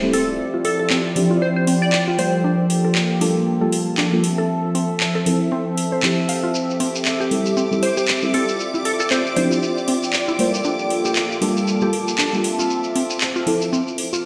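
Deep house at 117 BPM in D minor, this moody, late-night cut rolls on a swung 16th-note feel over Dm11, Gm9, Fmaj7 and Am7 chords. A hollow, flute-like pad and a warbling, nostalgic tape-like pad hold the harmony throughout, while deep, dark chord stabs with chorus, phaser and digital delay punctuate the groove. A woody, round mallet-like synth pluck carries the arpeggios through a filter sweep, and a glassy, crystalline wavetable pluck with tape echo plays a short melody at the start and again from 7.8 s. The house drum kit sits up front with metallic, overdriven hi-hats and handclaps, joined at 6.5 s by a grainy shekere and a faint, shimmering string machine high in the violin register. A lush hall reverb and the stony ring of a bare room surround the mix, giving it the sound of a big sound system playing in a stone room.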